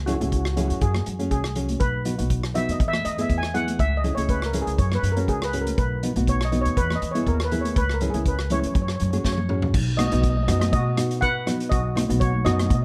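A shimmering, dry lead steel pan carries the melody in this festive, carefree calypso excerpt at 121 BPM in B major, joined by a woody, growly upright bass, a thumb-plucked classical nylon-string guitar, a punchy, up-front vintage drum kit with dark cymbals that plays a fill at 9.2 seconds, and soft-handed congas set in the background, all captured with close, detailed microphones and little reverb.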